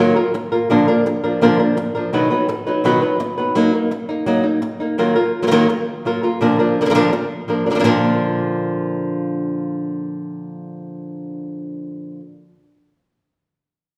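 Passionate and dramatic, this flamenco excerpt features a lone fingerpicked flamenco guitar carrying the melody from start to finish, its boxy acoustic tone sitting up front with audible finger squeak. Chords such as Ebmadd9, Bb, B and Gb6 color the line, and the guitar rings out in a recital hall whose generous reverb lends the sound a spacious, churchlike bloom. After the opening section, a contrasting passage arrives at 7.8 seconds, and the excerpt is cut from a longer piece.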